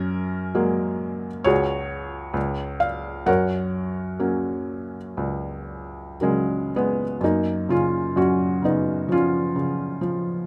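A felt-muted upright piano opens alone on an F#add9 chord, setting a peaceful, lyrical classical mood in F# major. The piece unfolds in 4/4 at a slow 56-67 BPM with a free, rubato feel, and the harmony moves through C#sus4 and F# before settling onto F#maj7 at 7.2 seconds, where a new section begins. The piano's tone is soft and intimate, with the thin felt giving it a mellow, muffled character and a short sustain, while audible action noise accompanies the playing and the instrument sits up front, close to the listener. Its range spans from C#2 up to F#5, and light reverb adds a gentle sense of space around the solo. Tuned slightly above standard pitch to A4 = 441 Hz, this brief 10.5-second fragment of a longer work feels calm and warm throughout.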